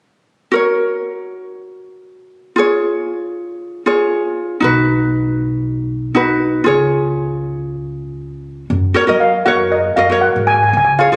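A straight 4/4 calypso groove carries this festive, sunny excerpt, cut from a longer piece. A light, fingerpicked acoustic ukulele sits up front from 0.5 seconds, picking through a simple cycle of chords that returns home as the second section begins. At 4.6 seconds a pizzicato upright bass joins underneath, its steel strings giving a woody, growly tone. The lead steel pan enters at 9.2 seconds with the melody, played with medium rubber sticks for a metallic, shimmering sound that stays dark and smooth and sits prominently at the front of the mix. The recording has the character of a phone capturing the room, with a lively recital-hall reverb and a murmur of club ambience around the players.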